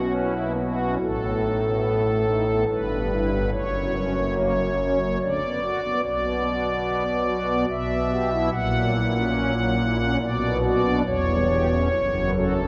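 A solo pipe organ on shimmering, soft string celeste stops opens on an F#7 over B and carries this grave, dark classical chorale in B minor at 72 BPM in a rubato 3/4, its romantic voicing spanning E1 to F#5 and sitting up front. The harmony moves through Em/G, F#, Bm/D and F#7/A# before a C#dim/E leans into a closing Bm/F# at 11.9 seconds. A wet cathedral reverb with a 5.2-second decay places the listener further back in the room, and the 12.7-second passage is cut from a longer piece tuned to A4 = 439 Hz.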